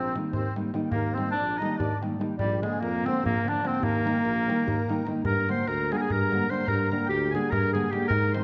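Balkan wedding-band folk in a wild, exuberant 7/8, this short excerpt puts a vintage-toned clarinet up front on the melody while a reedy, shimmering musette accordion carries a second line above a mellow, distant tuba bass with vibrato, as a full-bodied, thumb-plucked nylon-string guitar and a clay-shelled darbuka played with hard hands join at 0.2 seconds, all set in a dark production with a moderate recital-hall reverb as the chords move from Eb through Bb to Gm.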